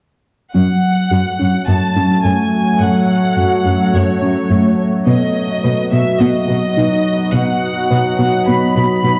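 A wet recital hall reverb wraps this short cinematic excerpt, a tense and relentless passage in F# minor at 106 BPM in a straight 4/4, with a dark, warm production. From 0.5 seconds a smooth, distant chamber violin section carries the melody with an even vibrato, while a close, focused symphonic cello section anchors the bass beneath it. A harp-like synth pluck enters at the same moment with ringing, decaying arpeggios, softened by chorus and a digital delay that lets each note linger. At 1.6 seconds a deep, moody ambient pad swells in on a slow attack, its detuned sawtooth layers and sub octave holding sustained chords in a chorused, reverberant haze. The harmony rests on F# minor before moving to B at 5.1 seconds, keeping the mood tense and relentless.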